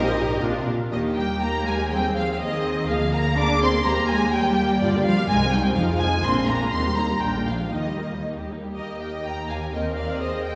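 Strings enter together from the start of this brief, graceful, cheerful Eb major passage for string orchestra, a quick classical-period movement at 124 BPM in 2/4 with a rubato feel, cut from a longer piece and ending on an Ebmaj13 chord at 9.7 seconds. A focused, up-front violin section carries the melody with vibrato over a smooth second violin line, while a close viola section supplies accompaniment and an expressive cello section, gliding with portamento and soft attacks, joins a rich double bass section on the bass. A lush scoring-stage reverb gives the ensemble the resonance of a church or concert hall.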